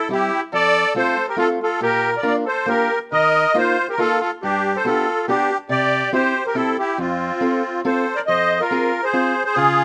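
Alpine folk in a bouncy, jolly dance-band style, this excerpt moves at 139 BPM in 3/4 with a rubato feel in F major. A reedy, shimmering musette accordion carries the melody up front, while a brilliant, punchy trumpet with light vibrato plays a classical-style second line and a boxy, fingerpicked parlour steel-string guitar with fresh strings joins at 0.1 s as accompaniment. Moderate studio reverb surrounds the trio, and at 8.3 s the harmony turns to F minor as a new section begins.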